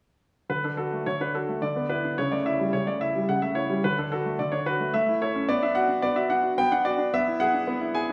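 A bright concert grand piano opens at 0.5 seconds, playing solo in an elegant, playful classical-period sonatina in D major. The tempo sits at 109 BPM in a straight 3/4, and the brief passage runs to 8.1 seconds as a cut from a longer piece. Its tone is brilliant and natural, with deep bass, spanning C#3 to G#5, and it sounds up front. The harmony moves from D through slash chords such as E5/D and A7/C# before returning to D, then passes through A and B minor to an E7/B. A wet recital hall reverb of about 1.5 seconds, with a touch of studio ambience, gives the instrument a graceful sense of space.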